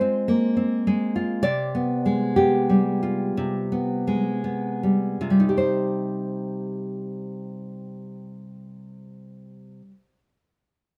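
A fingerpicked nylon-string guitar, full-bodied and up front, plays a wistful, intimate romantic solo in C minor at a rubato 51-73 BPM in 4/4, slowing through its opening from Fm to G7/C before settling on Cm at 5.6 seconds in a new section, with light reverb framing its deep classical tone across this brief fragment of a longer piece.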